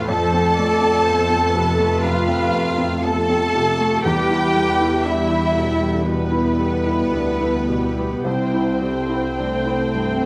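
In a free, rubato 4/4 hovering around 52-61 BPM, this sorrowful, moving cinematic fragment sets two con sordino violin lines, one carrying the melody and one a second line, above a felt-muted upright piano with a soft, intimate tone, while veiled viola and cello sections and a distant double bass section give dark, bowed support. A mellow French horn section holds sustained chords in the background, and a very quiet concert harp adds ringing, fingerpicked arpeggios as the harmony passes from F to Em at 4.1 seconds and on to C at 8.3 seconds. Close, detailed microphones and light reverb keep the lush, muted melody violins near.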